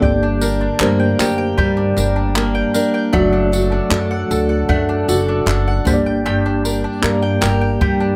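Tender and wistful, this 8.2-second cut from a longer acoustic pop piece moves at an unhurried 77 BPM in G harmonic minor over Gm and D/F#, with a picked dreadnought steel-string guitar adding finger squeak, a double-strung mandolin playing arpeggios, a reedy, mellow electric piano with fast tremolo heard through its built-in speakers, a dark, woody pizzicato upright bass sitting up front, and a small-room brush kit with a boomy kick, handclaps and tambourine, all in a moderate studio reverb.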